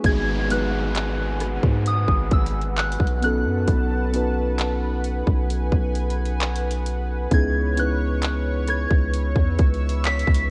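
A trap drum kit sits up front with a hard-clipped kick, metallic hats, handclaps and rim clicks, roughened by vintage 12-bit sampler grit, anchoring this slow, sensual, longing contemporary R&B fragment at 66 BPM in 4/4. Beneath it a deep, sine-like 808-style bass holds long decaying notes, while muted, felt-like synth keys with a dark, intimate tone and a shimmering, detuned pulse-width pad carry chords moving from G#m7 to B7 and on to C#m9 at 7.3 s. A pure FM bell melody with chorus and phaser floats high above, an electronic downlifter runs until 7.3 s, and the whole recording sits in a digital ambience tinged with the warbly pitch drift of worn cassette tape.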